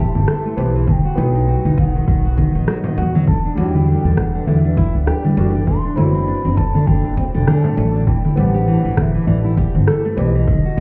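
Organic downtempo at 100 BPM in 4/4, with a lightly swung sixteenth feel and a mystical, hypnotic mood, this excerpt from a longer piece moves through Am7, B, Em7 and D7/F# before settling back on Am7. A breathy, hollow bamboo bansuri carries the melody with a straight tone and crisp attack, close-miked and trailed by tape echo. A fingerpicked nylon-string guitar plays classical-style arpeggios with fresh strings, audible finger squeak and delay, while a woody, thumpy pizzicato upright bass sits up front with tube saturation. Behind them, a soft felt-muted upright piano adds intimate accompaniment with audible action noise and sidechain pumping, and an ethereal, very quiet pad holds sustained chords with slow attack, ensemble chorus and tremolo. A layered deep house kit of congas, metallic hi-hats, rim click and shaker enters at 0.2 seconds and a punchy overdriven electronic kick follows at 0.9 seconds, with a small, bright frame drum heard in the background briefly before returning from 7.6 seconds. 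The whole mix sounds muffled, as if heard through a wall, inside a club-like reverb.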